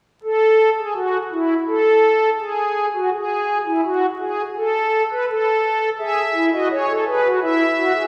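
A pipe organ's strings celeste stop enters at 0.2 s, its shimmering, soft tone carrying the opening of this elegant, lively baroque-style four-part fugue. The classical piece moves at 84 BPM in a straight 4/4, tuned to A4 = 439 Hz. The organ plays solo and sits up front, its romantic voicing confined to the span from E4 to E5. The line begins unharmonized, settles on an E chord at 6.0 s, then returns to open, chordless writing before this brief cut from a longer work closes at 8.1 s. A wet concert-hall reverb with a 2.0 s decay places the listener further back in the room, while a layer of vinyl crackle and small-room ambience adds an aged, intimate texture.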